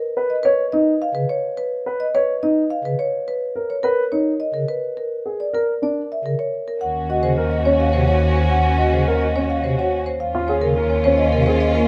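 Light reverb frames a close, dry marimba and a warm grand piano, both sitting up front in this short cut from a longer classical piece of minimalist pattern music. At 106 BPM in a straight 3/4, the mood is urgent yet meditative: the medium-mallet marimba carries a full-toned melody while the piano circles in arpeggios over chords moving from C#7 with its third omitted to Bmaj9. From 1.1 seconds a soft, hollow stopped-flute pipe organ adds mellow, romantically voiced accompaniment in a lower register. At 6.8 seconds the music settles into Eb dorian on an Ebm7 chord, where a rich studio string section brings sustained, bowed chords with vibrato and a gentle attack. At the same point, a lush double bass section holds a focused, smooth-topped Eb low and up front, before the harmony turns to Dbmaj9/Eb.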